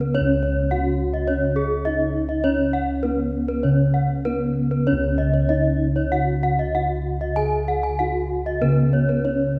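Balinese gamelan in a brilliant, ceremonial mood: a mellow bronze metallophone struck with padded disc mallets carries the melody with soft, shimmering beats from its paired tuning, while a second metallophone played with a wooden mallet spins arpeggios in a dry, full, close-miked sound. Dark, round bossed gongs hold the smooth, up-front bass beneath them, all set in a concert-hall reverb heard from further back in the room. This excerpt, cut from a longer piece, moves into a new section at 4.9 seconds.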